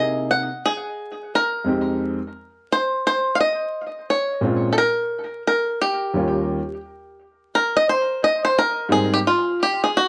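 A swung sixteenth-note hip hop groove in 4/4 carries this cool, smooth passage, where a twangy, fingerpicked bluegrass banjo with analog delay leads up front over a woody, long-sustaining upright piano moving from C7alt through Fm9, Bbm7 and Eb9 to Abmaj9, before the banjo takes a solo from 7.2 seconds and the piano stops at 9.2 seconds, all within moderate studio reverb and a bed of vinyl crackle.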